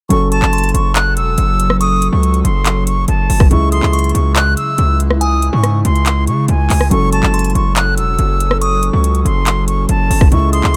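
Brooding and hard-hitting, this half-time trap cut at 141 BPM moves between F#m and C#m, with an airy silver concert flute carrying the melody with vibrato over a dark, mellow baby grand piano and a glassy FM pad that swells in at 1.0 seconds with ensemble chorus and its own reverb. A heavy, saturated 808-style bass with a noise layer and an up-front electronic trap kit of hard-clipped kick, metallic hi-hats, handclaps and rim clicks drive the low end. In the background, a delicate, tinkling synth tine bell with chorus and tape echo adds a second line from 0.3 seconds, all in a dry mix.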